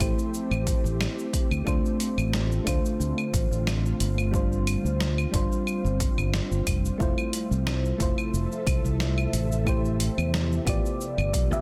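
Sunset chillout in A minor at 90 BPM with a light sixteenth-note swing, wistful and warm, moving through Am7, Dm7, G7sus4 and Fmaj7 before returning to Am7 and turning to G7 in this short cut from a longer piece. A mellow, warbling FM electric piano with a soft noise layer and tape echo sits up front over an ethereal, detuned pad whose shimmer reverb and ensemble chorus give it a hazy glow. A round fingered electric bass anchors the low end, while a gritty, sampler-style kit of cabasa, claves, hi-hat and snare pairs with a punchy, overdriven electronic kick that drops out at 11.5 seconds, all inside a dense, heavily limited modern master.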